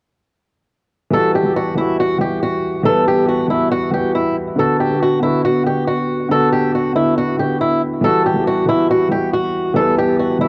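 A boxy, fingerpicked acoustic guitar carries the melody up front with a swing feel, its tone dulled by a low-pass filter and cassette tape and trailed by analog delay. A mellow grand piano with deep bass and short sustain shares the foreground, also low-passed and taped, as both play from 1.1 to 10.5 seconds over chords moving from Emadd9 to Bm and back. This eerie, brooding half-time hip hop excerpt sits in a small, damp booth with the character of a home cassette recording.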